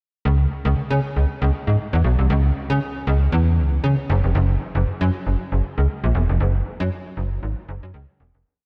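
Funk piece, slick and danceable with a light 16th-note swing, carried entirely by a solo slap-like FM bass whose snappy, metallic, up-front attack drives a fat syncopated boogie line full of muted ghost notes and chromatic approach notes, coloured by lush chorus and analog delay and soaked in a dreamy hall reverb before fading out from 6.4 seconds.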